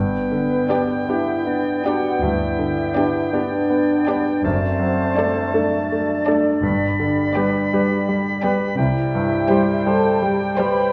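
Passionate and lush, this classical passage flows in 12/8 with a free, rubato feel, taken from a longer piece. A clear grand piano carries the melody up front, its vintage tone smooth with short sustain, while a mellow French horn section holds sustained chords beneath it. Woodwinds weave second lines around the keyboard: a bright oboe with vibrato, an airy flute set at a distance, a very quiet clarinet with a soft attack, and a bassoon supplying accompaniment in the background. A woody, dark cello section and a very quiet double bass section hold the bass from the opening until 9.7 seconds, played sul tasto. Upper chamber strings join at 0.7 seconds, also sul tasto: intimate violin sections on the melody and a second line, and a pure, floating viola section in accompaniment. Round timpani struck with soft mallets on calf heads sound briefly at 6.6 seconds, and a moderate scoring-stage reverb lends the ensemble a spacious, rich glow.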